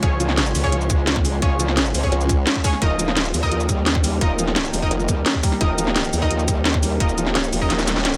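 Lightly reverberant digital ambience frames this dark, mechanical excerpt of technical drum and bass at 172 BPM, where a tight, layered electronic kick and an up-front kit of cracking snare, metallic hi-hats and cabasa drive a growling, saturated growl bass with chorus and sidechain pumping, as a formant-sweep wobble bass bursts in briefly at 2.1 and 4.9 seconds, a bold, bright orchestra-hit-like synth stab fires punchy bursts through reverb and tape echo, a soft felt-muted upright piano arpeggiates intimately in the background with tape echo, an eerie, warbling FM drone sustains inharmonic chords, and a very quiet, deep, moody pad hums beneath, all shifting from Db to Eb before the kick drops out at 7.7 seconds for a closing drum fill.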